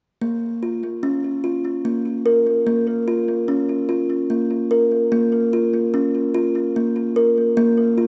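A lone kalimba, plucked with the thumb and heard up front, rings out with a woody, solid-board tone through tape echo and a wet plate reverb in this gentle, meditative world piece in lightly swung triple time, its cassette-tinged, echo-heavy sound moving into a new section at 5.1 seconds before this short passage from a longer piece ends at 8.1 seconds.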